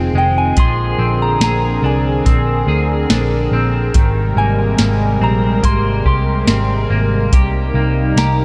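Dream pop at 71 BPM with an ethereal, hazy mood, this excerpt sets a soft, pure FM synth bell melody, drenched in chorus, phaser, echo and shimmer reverb, over a detuned sawtooth analog pad, picked arpeggios from a bright, clean semi-hollow electric guitar with lush chorus, and a dark, round foam-muted picked bass, while a vintage rhythm box with deep kick, crisp snare and metallic hats enters at 0.6 seconds, all moving through Fm7, Bb9, Abmaj9 and Cm7 inside a big, hall-like arena space.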